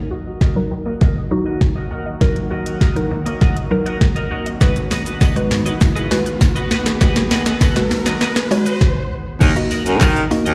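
An overdriven, electronic R&B drum kit with a soft kick and sharp snare drives this energetic dance-pop excerpt, building over a woody, mallet-like synth pluck, a shimmering ethereal pad, a twangy twelve-string electric guitar riff, lush unison-pluck arpeggios in the background, a background riser and a very quiet, jingly tambourine that enters at 4.6 seconds. After a filter-swept build-up and a brief stop at 8.8 seconds, the drop arrives at 9.4 seconds, where a breathy, whispered baritone saxophone enters on the bass line with a pumping pulse. The whole mix has the sound of a live gig heard through a venue's PA, with moderate club reverb.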